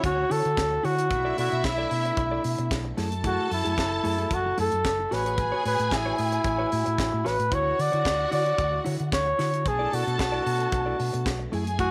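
Light reverb and a small-room ambience frame this sultry, danceable disco excerpt at 112 BPM in a straight 4/4, moving through Dmaj9, Bm7, F#m9 and A69 chords. Up front, a breathy flugelhorn carries the jazz-style melody with scooped notes and gentle vibrato from 0.1 seconds, while a lush, distant string section bows an expressive second line with portamento and a very quiet French horn section holds soft-attack sustained chords. Beneath them, a round, dark hollow-body electric bass and a tight funk kit with high-tuned snare, kick drum and hi-hat hold down the groove, as a clean, compressed electric guitar plays accompaniment in the background.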